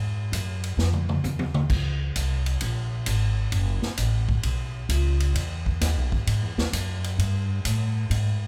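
A woody, thumpy upright bass opens this joyful, energetic big band swing fragment, plucked up front in a low register, with a swinging drum kit joining at 0.3 seconds. The drums bring a punchy kick, medium-tuned snare, hi-hat, ride, crash and toms, and a drum fill from 0.8 to 1.7 seconds launches the next passage as the swing drives forward. A moderate recital hall reverb gives the whole fragment a roomy sense of space.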